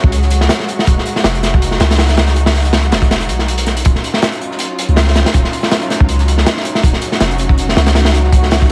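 A crunchy breakbeat drives this frenetic, raw drum and bass and jungle fragment at 161 BPM in 4/4, its 16ths swung slightly, with a break landing between 3.1 and 3.9 seconds. The main kit sits up front and mid-forward, its tight kick, medium-tuned snare and hi-hat sounding gritty and saturated with a rolled-off top. Behind it, a very quiet second kit of hi-hat and snare enters at 0.1 seconds from a small room, dark and smooth in tone. A long, deep 808-style bass with a sine-like, mellow body, a fast attack and a decaying tail holds the low end up front, thickened by tube saturation. A bowed string ensemble plays sustained chords throughout, woody and lush with vibrato, moving from Dbsus4/Eb to Ebm9 at 3.9 seconds in Eb minor. The sound is dry, with little reverb, and a layer of vinyl crackle sits in the mix.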